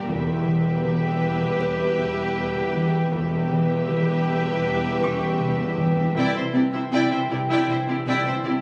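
Heard through a phone in the room, this fragment of a longer piece sits in a soaked scoring-stage reverb with a club-like reverb around it, giving a tense, mysterious suspense-film-score atmosphere in 4/4. Lush, vibrato-laden bowed violin sections carry a distant melody over a focused second line, while violas, background cellos and double basses add smooth, even depth alongside a very quiet, mellow French horn section and ethereal, beating glass harmonica chords. A rubbery, hollow square-wave bass riff and hard-stick taiko drums sit further back, with a drum fill at 5.4 s, a delicate, tinkling music box joining at 1.6 s, and the harmony moving from Em to Cadd9 at 6.2 s.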